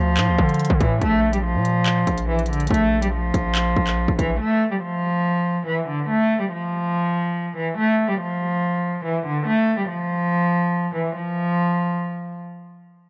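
Heard through the soft blur of a home cassette recording with light reverb, this menacing, tense drill excerpt moves at 142 BPM in 4/4 with a half-time feel. A single bowed cello carries the melody sul tasto, its tone pure and floating, softened by a low-pass filter as it moves between D3 and A3 over a Dm to Bb5 progression. Beneath it, a heavy, aggressive 808-style bass hits with a fast attack, its sine tone saturated and roughened by a noise layer before decaying. The electronic drum kit adds a hard-clipped kick, crisp hats and handclaps, re-recorded in a large room, while a barely audible downlifter slips through the opening second. Bass and drums drop out around 4.4 seconds, leaving the cello alone until it ends at 12.4 seconds.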